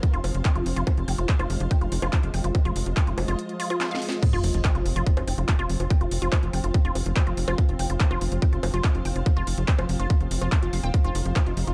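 Opening on an overdriven, up-front electronic kick, a drum kit of cracking snare, bright hi-hats, handclaps, bongos and crash cymbal, a tight sawtooth sequencer bass and a woody, chorused wave-folded pluck riff with digital delay over a cloudy granular pad, a pulsing gated chord texture and a very quiet formant-sweep wobble bass, this driving, alien psychedelic trance excerpt in F minor at 143 BPM breaks at 3.4 seconds for a drum fill and a faint electronic swell and sub drop before the drop lands at 4.2 seconds, where the wobble bass falls away, all set in a dark, digital ambience.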